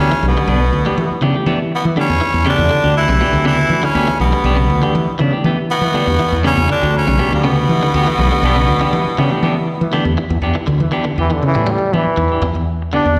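A defiant, funky afrobeat excerpt at 120 BPM in E dorian opens on Em7 with a growling, gritty tenor saxophone carrying the melody over a raspy, forceful baritone saxophone second line, two clean picked electric guitars (one bright and twangy playing arpeggios in the background, the other warm with stabs), a round, hollow-bodied woody fretless bass up front, and an overdriven, reedy electric piano with fast tremolo entering at 0.2 seconds, the horns, guitars and piano all carrying slapback echo, until the saxophones stop at 9.9 seconds and a brilliant, punchy trombone solo takes over at 11.2 seconds, all of it a live gig heard through the venue's PA with recital-hall reverb.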